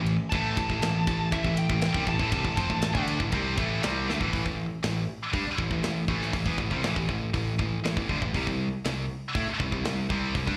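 This heavy metal passage, cut from a longer piece, opens with two distorted high-gain guitars riffing in A minor at 120 BPM in a straight 4/4, one bright and up front, the other scooped and set in the background, both carrying slapback echo. Alongside them a round, punchy fuzz bass, overdriven and up front, holds the low end from G1 to A2, while a tight metal drum kit of hi-hat, kick, snare and ride, with bright cymbals and a medium-tuned snare, comes in at 0.1 seconds. A dark, high-gain lead guitar sings a short melody between E5 and A5 from 0.3 to 3.0 seconds, its tone carrying delay as well as slapback echo. A drum fill at 4.1 seconds leads the band off the opening Am and into a second stretch that moves from A5 to C5 power chords. The mood is dark and epic, and the sound is that of a live gig heard through a club PA, with little reverb on the instruments themselves but the venue's room ambience around them.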